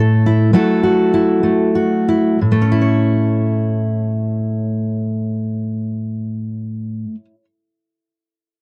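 Hopeful and gentle, this short folk fragment, cut from a longer piece, features a lone fingerpicked steel-string acoustic guitar playing in A major. The tempo sits somewhere between 84 and 112 BPM in 3/4 time with a straight feel, and the music slows down over the opening 2.4 seconds. The dreadnought guitar has a warm tone and sits up front, ranging from A2 up to C#5 across its 7.4 seconds. Its harmony moves from A to F#m7 and then returns to A at 2.4 seconds as a second section begins. The sound is dry and close, with little reverb, recalling an intimate 1970s studio recording.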